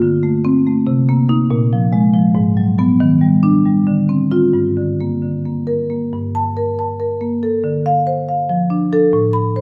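Set up front in a wet stone room, a dark, woody marimba played with medium hard mallets carries this flowing contemporary classical excerpt for solo marimba alone, moving in a rubato 7/8 at 258-287 eighth-note beats per minute in G minor (tuned to A4 = 445 Hz), ranging from G2 to B5 through chords such as Cm7, Abm7 and Ebmaj7 before settling on Gm and shifting into a new passage at 6.1 s that opens on Gmadd9 and closes on F6 at 8.5 s.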